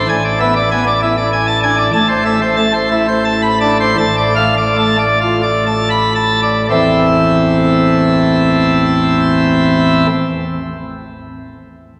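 A full, brilliant pipe organ plenum, up front with bright mixtures and a touch of chiff, plays alone in a stormy, majestic A minor organ toccata excerpt in 3/4, slowing down from 1.0 to 6.7 seconds and falling silent at 10.1 seconds, its baroque voicing spanning A1 to B5 and bathed in a wet cathedral reverb.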